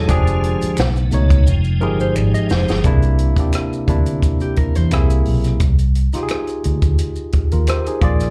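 Soulful and late-night, this neo-soul R&B excerpt in F dorian sits at 87 BPM with a lightly swung 16th feel, heard as a live club gig through the PA with club reverb. A barky, overdriven tine electric piano and a dark, foam-muted fingered bass play throughout over a dry, punchy cocktail drum kit with a high-tuned snare, while maracas and finger snaps sit compressed and saturated in the background. A piping tonewheel organ with slow rotary speaker and key click holds chords until a drum fill closes the opening passage at 2.8 s, and from 1.8 s a mellow, clean electric guitar adds a second line with slapback echo as the harmony moves from Fm69 through C9 to Fm9/C.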